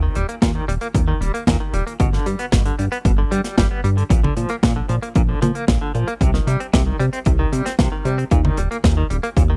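A dry, close studio sound in the 1970s manner frames this brief, bittersweet and nostalgic italo disco excerpt, cut from a longer piece and moving at 114 BPM in a straight 4/4 in C minor. A chorused synth bass anchors the low end from the first moment, its glossy, evolving tone built from pulse and sawtooth waves with a filter pluck, a fast attack, sustained notes and a dark, retro shading. Over it, a direct-recorded clean electric guitar plays bright, twangy, picked arpeggios, compressed and scooped, colored by tremolo and tape echo and sitting lower in the mix. The tight funk drum kit arrives at 0.2 seconds with an airy, polished hi-hat, a medium-tuned snare up front and toms, followed at 0.4 seconds by a punchy, overdriven analog electronic kick that was re-recorded in a large room. The harmony steps through Eb, G, Bb and C minor before returning to Eb, giving the short passage a wistful lift.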